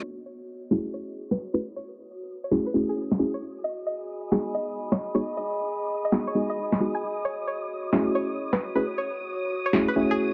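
UK garage in a two-step vein, this short excerpt moves at 133 BPM with a swung sixteenth-note feel in F# dorian, giving it a skippy, late-night mood. A layered electronic garage kit sits up front with a cracking snare and crash cymbal, playing until 9.9 s. From 0.7 s, deep, full-bodied chord stabs with a slightly nasal edge carry the harmony through F#m9 and G#m7, colored by chorus, cassette tape character and digital delay while a filter sweep runs across them. Above, a bright, twangy resonator pluck with a string-like quality plays the melody, treated with chorus, phaser and dub echo. Around these parts, a warbling, nostalgic lo-fi pad adds mellow texture, and a distant, dark violin section holds lush bowed chords with vibrato behind a low-pass filter. The mix is dense and heavily limited, set in a moderate digital room reverb with a filtered top end.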